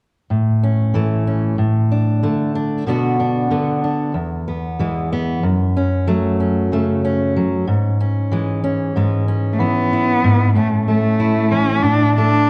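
Folk in A major at 94 BPM, nostalgic and uplifting, where an up-front fingerpicked steel-string dreadnought guitar moves through A, D5/A, Bm, E, F#m and C#m/G# from 0.3 seconds before a bowed, nasal, boxy cello enters at 9.5 seconds with expressive vibrato and portamento, all set in a wet recital hall reverb and colored by worn cassette tape with warbly pitch drift, cut from a longer piece.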